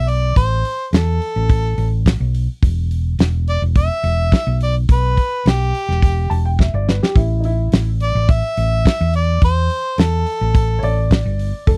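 A straight-eighth soul blues groove at 106 BPM in 4/4 sets a smoky, brooding mood, as an up-front acoustic drum kit with a tight kick and a dark, round hollow-body electric bass support an overdriven, jazz-style harmonica with light vibrato and scooped notes, while a woody upright piano enters at 6.3 seconds just before a drum fill at 6.6 seconds, in a dry, close 1970s-style studio sound.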